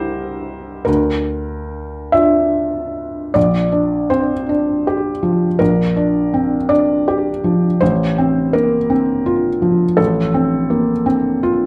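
A felt-muted upright piano plays alone in this reflective, melancholic neoclassical minimalist fragment from a longer piece, its soft, mellow, intimate tone sitting up front with audible action noise and a slapback echo as it moves rubato in 6/8 from C through Bb/D, shifting into a new section at 3.4 seconds on Bb6 and settling on F/A at 7.8 seconds, all captured by close, detailed microphones in a moderate booth ambience.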